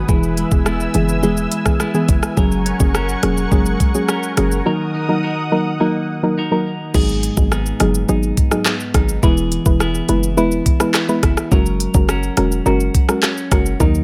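A straight 4/4 dancehall groove at 105 BPM in G# minor rides on an up-front electronic afro-pop kit with a knocking kick, smooth hi-hats, handclaps, rim clicks, shaker and crash, anchored by a punchy, tight 808-style bass, for a hypnotic, bouncy feel. A bright, twangy clean electric guitar picks compressed arpeggios through tape echo, while a soft, dark, round pluck with chorus and sidechain pumping fills in the accompaniment over chords moving from E and F#add9 to D#m and G#m7. A thick, warbling vintage unison pad holds sustained chords until it drops out at 6.9 s after a break from 4.7 s, and the whole cut from a longer piece keeps a dry sound.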